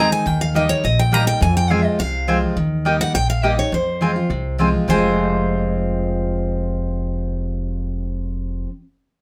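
Bluegrass in F minor at a brisk 208 BPM, this rustic, haunting excerpt from a longer piece moves between Eb and Fm chords, with a bright, full-bodied dreadnought guitar picking the melody up front while a jumbo guitar with fresh strings supplies warm picked accompaniment. A mellow, round mandolin adds double-string stabs, and a pizzicato upright bass with gut strings gives a woody, thumpy, dark low end that sits up front until 8.6 seconds. Moderate studio reverb lends the ensemble a short sense of space.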